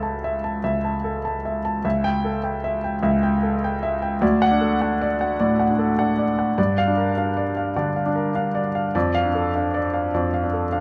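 Agitated and stormy, this brief fragment of a classical virtuoso piano study moves at 101 BPM in 4/4 with a rubato feel in D major. A solo grand piano carries it from 0.0 to 10.8 seconds, spanning C#2 to A5 with a clear, intimate, up-front sound, audible action noise and long sustain in a light reverb. The harmony travels from A/C# through A7/C# to D, then darkens to Gm7 at 6.6 seconds before settling on Dm/F.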